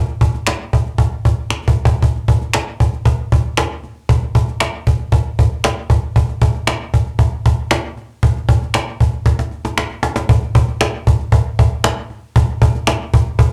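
A straight, steady four-four groove drives this uplifting, joyful soul excerpt, carried by a snappy, hard-hit cajon with snares that sits close and up front, adding fills at 1.5 and 9.3 seconds before the music moves into a new section at 10.3 seconds. Human-sounding finger snaps play quieter beside it, close and dry with a slapback echo. The whole performance comes across as a live gig heard through the venue's PA, wrapped in a short, wet club reverb.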